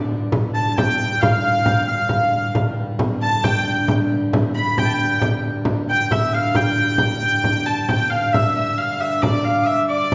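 Medieval dance in a straight 6/8, festive and ancient in mood, cut from a longer piece. A reedy, breathing pedal harmonium holds a low drone from the start while a small, bright frame drum played with soft hands sits close and dry up front, and from about 0.6 s a rich, smooth hurdy-gurdy carries the melody. Behind it an edgy shawm adds a folk-style second line with scooped notes, all set in a recital hall heard from further back, with the music moving into a new section at 7.9 s.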